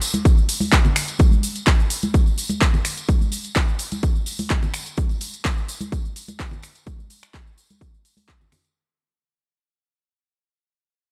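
A dry, gritty hardware-style recording opens this short house excerpt straight into a drop, a nostalgic, sensual groove of punchy, overdriven electronic kick joining at 0.3 seconds alongside a layered kit of finger snaps, handclaps, hi-hat and shaker with sidechain pumping on the hats, while close, hard-handed tambourine and congas pump beneath, all fading out from 1.2 seconds.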